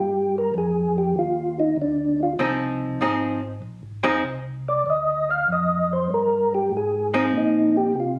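A tonewheel organ opens this soul jazz organ trio fragment at once, its soft, flute-like melody sitting up front with a percussive second-harmonic bite, slow rotary speaker, chorus vibrato and plate reverb. Beneath it, a second tonewheel organ carries the bass line in a round, dark voice, also treated with chorus vibrato and slow rotary speaker. The groove is bluesy and soulful at 97 BPM in 4/4, swung at 69% on the eighths and tuned to A4 = 441 Hz, with the harmony moving from a rootless C7 to Fm7. At 2.4 seconds a miked and amplified archtop guitar enters as accompaniment, its clean, picked, hollow-body tone compressed and placed up front before it drops out at 7.9 seconds. The organ solo runs through the entire 8.2 seconds, heard in a moderate club reverb as if captured on a phone in the room, with added studio reverb and compression.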